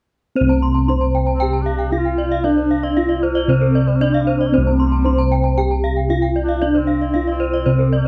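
Balinese gamelan with a ceremonial, shimmering mood, cut from a longer piece: a soft bronze metallophone played with padded mallets carries the melody from 0.4 s, two bright horn-mallet metallophones ring out arpeggios (the higher one with slapback echo), round, beating bossed gongs sit up front in the bass in a boxy small room, and a mellow cor anglais enters at 1.3 s with a classical-style second line, all within a dry, close 1970s-style studio sound.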